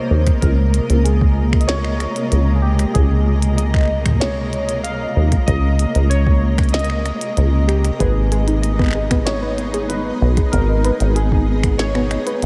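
A rubbery, resonant acid bass sits up front, its sawtooth filter plucks anchoring a playful, intricate IDM excerpt at 95 BPM in Db major, moving from Dbsus2 to Abm at 8.0 seconds. Above it, nostalgic lo-fi synth keys carry a warbling, detuned melody through chorus, phaser and analog delay, while a cloudy granular pad holds evolving, blurred chords and a flickering, grainy texture glimmers in the background. A soft overdriven electronic kick and a glitchy kit of tiny snare, clicky hats and finger snaps enter at 0.3 seconds, and a dusty, dark pluck adds 12-bit-gritty arpeggios from 8.0 seconds, all within a dreamy mix soaked in cathedral reverb.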